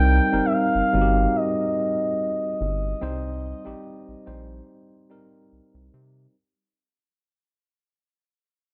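A rubbery, hollow square-wave bass sits up front in this short, late-night R&B fragment at 72 BPM in C minor, its filter-plucked notes bouncing beneath a lightly swung 4/4 groove on a Cm7 chord. A worn, slightly out-of-tune tine electric piano carries the accompaniment, while a smooth, expressive sawtooth synth lead with chorus and vibrato sings a soulful melody high above until 5.5 seconds. Light reverb and digital ambience give the dark, warm production its intimate glow as the whole passage fades out.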